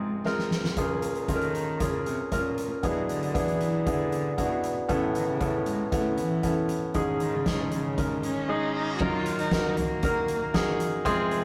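A clear, polished concert grand piano with deep bass and a rich, focused bowed cello played by one player with vibrato open this uplifting piano-driven pop fragment, cut from a longer piece. A drum kit played with soft mallets arrives with a fill at 0.3 seconds, sitting up front with a fat snare and boomy kick in a big acoustic room, while the chords move from Fm through Db6, E7/B, Aadd9 and Absus4. An electronic reverse cymbal at 8.2 seconds leads into a new section on Ebm at 9.0 seconds, all heard through a wet reverb in a rough rehearsal-room recording.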